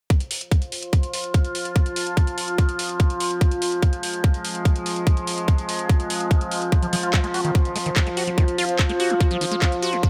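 A tight, up-front electronic kick drives this psychedelic, driving trance passage at 145 BPM in F minor, joined by a layered drum-and-bass kit of handclaps and metallic hi-hats with a small-room character, over an F5 chord. A drone of evolving, moving overtones arrives at 0.7 seconds with chorus and sidechain pumping, and a deep, moody, detuned pad with a sub octave and a moving notch settles in behind it at 2.1 seconds. At 6.7 seconds a squelchy, resonant acid bass riff enters with a filter sweep, phaser and digital delay, all within light digital ambience.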